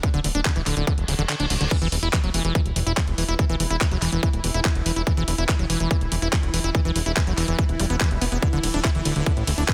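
A straight 4/4 pulse at 143 BPM drives this psychedelic trance excerpt, where a tight, up-front electronic kick (dropping out briefly from 1.3 to 1.7 s under a reverse cymbal) and a garage kit with bright hats, handclaps, crash and ride support a fat, detuned analog bass and a squelchy, resonant liquid acid riff with chorus, dub echo and sidechain pumping, while an evolving wavetable pad with phaser and built-in reverb enters in the background at 2.7 s over D5 and E5 chords in a dense, heavily limited, dry mix.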